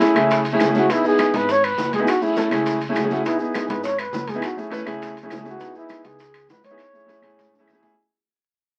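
A driving 4/4 groove at 204 BPM opens this Afro-Cuban jazz excerpt, set in motion by a bed of hand percussion: tight, high-tuned bongos sit very quiet, while ringing congas, metal-shell timbales and woody claves (entering at 0.2 s) stay in the background, joined by raspy guiro that drops out at 3.3 s and grainy, distant maracas. Beneath them, a pizzicato upright bass with steel strings supplies a woody, warm foundation. Up front, a warm grand piano with a smooth, vintage tone carries the accompaniment through a sultry progression centred on F#m9 and F#13sus4 before moving to Amaj13, C#m7 and F#m7. The lead belongs to a dark, breathy trumpet, close-miked and intimate, whose whispered, soft-attack solo lines carry vibrato. The whole passage sits in a modest small-room reverb with the crackle of a very old 78 rpm record, fading out throughout, and it closes with a drum fill from 7.4 s and a piano fill arriving at 7.5 s.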